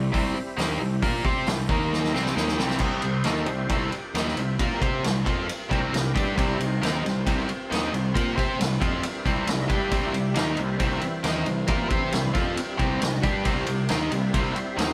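Gritty and raunchy, this blues rock and southern rock cut, taken from a longer piece, rolls along in a straight 4/4 with the feel of a power trio playing live in one room. A cranked stack guitar, bright, double-tracked and up front, drives the riff with overdrive, while a picked electric bass pushes growly fuzz underneath. In the background, a thick, overdriven tonewheel organ holds sustained chords through a slow rotary speaker and chorus vibrato, adding a gritty haze. The vintage acoustic kit sits mid-forward with a punchy kick, a medium-tuned snare and dark cymbals whose top end is rolled off. The harmony moves from C to Eb5 and back to C, and a drum fill from 1.9 to 2.8 seconds launches the band into the next section. A moderate stone-room reverb wraps the whole performance in a raw, earthy space.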